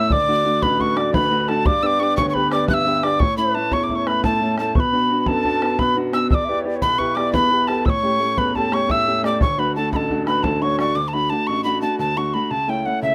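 A mellow wooden whistle carries the melody from the first moment, close-miked and up front with a crisp attack and chiff and a plate reverb around its airy, straight tone. Beside it, a reedy baroque flute plays a softer second line from a more distant place, its pure sound shaded with vibrato. A brilliant upright piano with a vintage, woody character and long sustain gives the accompaniment, moving through a cheerful run of changes from D to G, A, Bm, Em and A7 and back home. A tight, damped bodhran in a small room drives the lilting 9/8 slip-jig feel, giving this Celtic folk passage a rollicking spirit. Near 11.0 seconds the flute and bodhran drop away, leaving whistle and piano to start a new section that ends on A/C# as the cut from a longer piece closes at 13.1 seconds.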